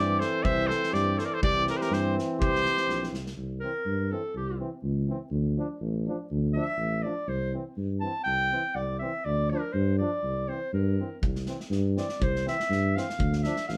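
Balkan brass band folk in a festive, virtuosic mood, moving at 122 BPM in a straight 2/4 and centred on C mixolydian, heard here as a short cut from a longer piece. A trumpet with light vibrato and a smooth top carries the melody up front for the first 3.1 seconds, while a warm, up-front clarinet plays a second line from the start and then takes a solo from 3.4 seconds to the end. Beneath them, a dark, punchy tuba holds the bass prominently, and a clear trombone with light vibrato plays accompaniment alongside a vintage-toned euphonium, set in the background. An acoustic drum kit with a medium-tuned snare, punchy kick and rolled-off top plays kick and snare in a pumping room during the opening seconds, then returns at 11.2 seconds. The harmony moves between C and Dm, and moderate studio reverb gives the feel of a band playing live together in one room.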